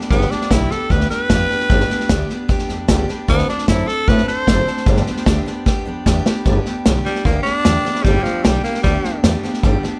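Rowdy and upbeat, this rockabilly excerpt in G major drives along at 151 BPM, with a raspy, gritty tenor saxophone out front carrying the melody, its scooped notes and light vibrato trailed by analog delay. Beneath it, a vintage drum kit with a punchy kick and pumping small-room sound, a woody, thumpy pizzicato upright bass on gut strings, and a full-bodied picked jumbo acoustic guitar with audible finger squeak keep the groove moving over G and D7. A drum fill at 5.7 seconds kicks the tune into a new section at 6.5 seconds, all set in light reverb.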